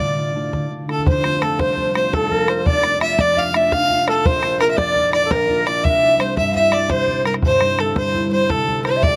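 Celtic folk slip jig in a straight 9/8, dark yet lively and spirited, cut from a longer piece as its chords move from D minor through F, B-flat and C. A rich, biting, earthy solo fiddle carries the bowed melody up front, while a breathy, mellow, somewhat unsteady wooden flute with vibrato plays a tongued second line from a distance, and a concert harp adds thumb-plucked, ringing accompaniment in its lower range. These three parts carry a slapback echo, and a boomy, open bodhran sits close and dry beneath them in an outdoor sound with little reverb.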